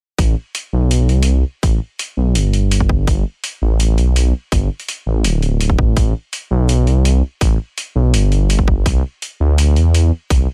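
A half-time groove at 166 BPM in 4/4 anchors this heavy, spacious slice of half-time drum and bass in A minor, cut from a longer piece. The overdriven electronic kick sits up front, tight and layered, while a gritty, pitched-down hi-hat with a compressed, sampler-style character runs beneath it at a lower level. A dark detuned saw bass carries the low end between D1 and E2, its detuned sawtooth and sine tones beating in a deep, rumbling sustain with a fast attack. All three parts play together from 0.2 seconds, with the bass holding on until 10.5 seconds. The mix stays dry and close, keeping the bass and kick prominent and weighty.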